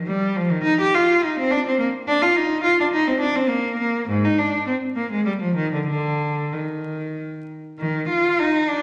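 Over a vinyl crackle, a lone bowed cello enters at 0.1 s in this introspective, solemn fragment of a baroque-style classical suite movement in 3/4, its rich, up-front tone shaped by soft attacks, vibrato and expressive portamento as it moves freely in rubato through a wet recital-hall reverb, turning to a new section at 7.8 s before the clip is cut off at 8.8 s.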